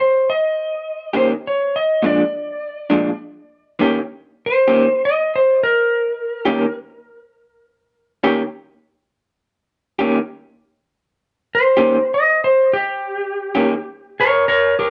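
A dark, mellow mix with a moderate studio reverb frames this soulful, laid-back slow blues in 12/8 at 68 BPM, in Eb mixolydian and tuned to A4 = 443 Hz. A clean, up-front lap steel carries the melody over Eb7 and Bb7, stretching into a slide solo from 3.8 seconds. Beneath it, from 1.1 seconds, an electric guitar through a small old amp adds slightly broken-up, lo-fi, compressed picked accompaniment with tremolo.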